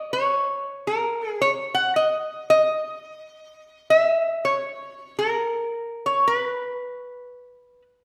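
A lap resonator guitar plays solo and up front from 0.0 to 7.8 seconds, its metallic, nasal slide tone picked out with fingerpicks. This languid, relaxed Hawaiian fragment, cut from a longer piece, moves at 112 BPM in 4/4 with a swung eighth-note feel. A wet recital-hall reverb gives the bright acoustic sound a gentle lingering tail.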